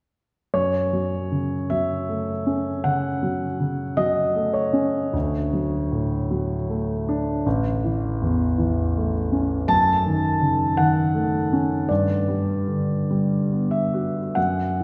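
A clear concert grand piano carries this short impressionist solo excerpt, sounding from 0.5 to 14.8 seconds with a deep bass, natural tone and long sustain placed up front. The mood is mysterious and nocturnal, and the playing moves in free rubato over uneven beats in common time, spanning from A1 up to A5. The harmony drifts from F#m to Dmaj7 at 5.1 seconds, then through A and F#m6 before settling on Gmaj7 at 11.9 seconds. A wet concert hall reverb with a 2.2-second decay surrounds the instrument, giving the impression of a church or large hall. Cut from a longer piece, the passage feels like a suspended moment of night music.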